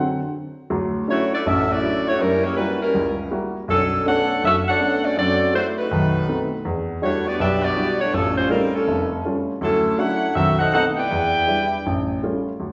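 Swinging eighths at a brisk 162 BPM in 4/4 drive this energetic jazz passage in D major, cut from a longer piece, where an intimate baby grand piano, its action noise audible and its notes short in sustain, comps through rich altered chords from 0.0 seconds while a tight, up-front saxophone section with warm vibrato carries the melody from 1.1 seconds, all set in the lush reverb of a recital hall with a dark, rolled-off top end.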